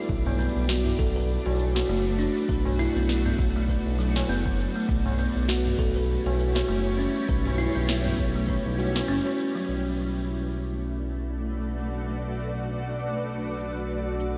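Organic downtempo in B minor at 100 BPM, this hypnotic excerpt moves with a gentle 16th-note swing through a dreamy, reverb-soaked hall. A granular cloud pad holds sustained chords throughout, its blurred, evolving tone shimmering with lush chorus and sidechain pumping, while a smooth synth bass sits up front with a nasal, saturated edge and a touch of vibrato. Up front too, a buzzing kalimba plucks woody, airy arpeggios through delay until 9.7 seconds, as the harmony shifts from D6 to C#m7b5 and then settles on Bm7. The rhythm comes from a tape-warm afro-pop kit of filtered crash, shaker and sharp snare, a deep electronic kick heard until 8.6 seconds, and a low-tuned, ringing tabla tucked in the background. The result feels soft-focus and warm, with the pad, bass and kit carrying on alone into the closing Bm7.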